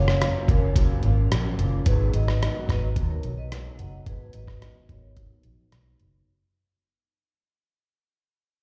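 A round, punchy, foam-muted electric bass sits up front in this dreamy, laid-back indie and bedroom pop excerpt at 109 BPM, beside a muffled, pitched-down sampler-style kit with a thumpy kick, hi-hat and rim click. Behind them, a dark, slightly broken-up electric guitar through a small old amp carries the chords from F#maj7 to G#m7 at 1.9 seconds, swimming in lush chorus, warbly pitch drift, slapback echo and a filter sweep. A ringing, metallic vibraphone, struck with hard mallets in a boxy small room, adds a second line until 5.0 seconds. The whole cut fades out and sounds like a live gig heard through the venue's PA, with recital-hall reverb.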